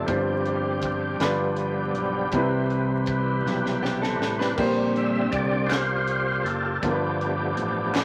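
Slow, soulful and uplifting gospel in 6/8 at 53 BPM, where a gritty, overdriven tonewheel organ with key click, chorus vibrato and slow rotary speaker holds sustained chords up front and takes a solo from 4.6 seconds, over a warm grand piano with long sustain, a round, dark fingered electric bass and a crisp fusion drum kit with a high-tuned snare and punchy kick that plays a fill before the solo, while a clean, compressed, direct-recorded electric guitar adds a brief second line at 3.8 seconds and close group handclaps join in the background at 5.7 seconds, all in moderate studio reverb with vinyl crackle through chords moving from G7sus4 and Cmaj7 to Bb69.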